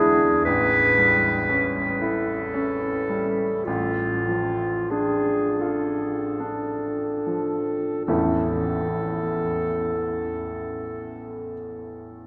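A bright, classical-style clarinet carries the solo melody in its middle register, sitting up front over a grand piano accompaniment that sounds brilliant and natural and reaches much lower, down into the deep bass. This is a romantic classical duo in 6/8 with a flexible, rubato feel, and its mood is warm and serene. The harmony moves from A7 to Dm/A while the opening passage gradually slows, and a new section arrives at 8.1 seconds as the music settles onto an A chord. The clarinet falls silent at 11.5 seconds, leaving the piano to sound alone until 12.3 seconds, where this fragment of a longer piece is cut. A wet cathedral reverb with a long decay lends the recording a spacious, distant ambience.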